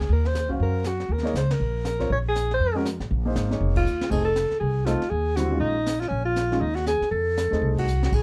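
A fast 4/4 swing pulse with lightly swung eighths drives this moody, smoky small-group jazz cut, taken from a longer piece. Brushes on an acoustic kit in a small room carry the time, with a high-tuned snare, a boomy kick and dark cymbals sitting a little back, and drum fills land at 3.9 and 7.9 seconds. Up front, a woody pizzicato upright bass with steel strings anchors the low end beneath a solo alto saxophone that carries the melody with vibrato and a soft subtone, its sound distant and roomy yet placed forward. A polished, present baby grand piano enters at 0.5 seconds to supply accompaniment over shifting minor and altered dominant harmony, while the band punctuates the line with accents together. Light reverb wraps the group in a dark, warm production.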